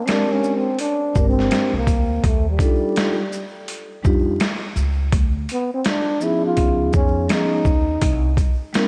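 Jazz-hop with a smoky, cool mood, this short cut from a longer piece rides a swung sixteenth-note feel in 4/4. A breathy trombone carries the melody as a solo from the very start, dark, whispered and intimate, with light vibrato, scooped notes, a soft attack and a touch of delay. Vibraphone played with soft mallets and the motor off supplies a mellow, ringing accompaniment over chords such as Bb13, Ebmaj9#11 and C#9. The boom bap sampler-style kit sits at the front with a thumpy kick, a high-tuned snare, hi-hat and shaker, sounding gritty, pitched down and overdriven as if re-recorded in a large room. A woody pizzicato upright bass enters at 1.2 seconds, while light reverb, studio ambience and vinyl crackle surround the mix.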